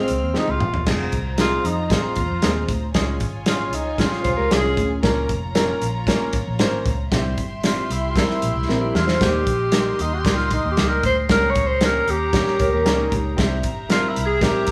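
Driving and passionate, this uptempo 1960s-style soul excerpt in F minor moves at 115 BPM, led by a breathy, whispered tenor saxophone up front with scooped notes and vibrato over a punchy acoustic drum kit, a dark, round muted electric bass and a woody upright piano with audible action noise. A soft chamber violin section plays a second line in the background, short riffs from a clean, fingered electric guitar with spring reverb come and go, and a bell-like glockenspiel struck with rubber mallets joins at 8.2 seconds. The band sounds live in one large studio room, with drum fills at 0.4 and 8.7 seconds.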